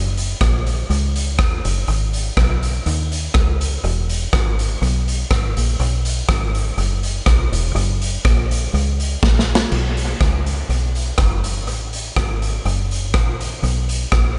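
Ska at 123 BPM in B major, this upbeat, bouncy excerpt pairs a deep dub electric bass with a raw garage drum kit. The fingered bass sits low, between E1 and D#2, with a dark, foam-muted, round tone heard directly and through an amp. The acoustic drums come in at 0.2 seconds, up front, with crash cymbal, hi-hat, a punchy kick, rim click and a medium-tuned snare, their gritty, saturated sound coloured by a bright stone room that pumps, a rolled-off top and a dub echo. A drum fill from 9.2 to 9.7 seconds leads into a new section that runs to the end at 14.4 seconds. The mix is dry, with little reverb and a top end that stops at 10.6 kHz.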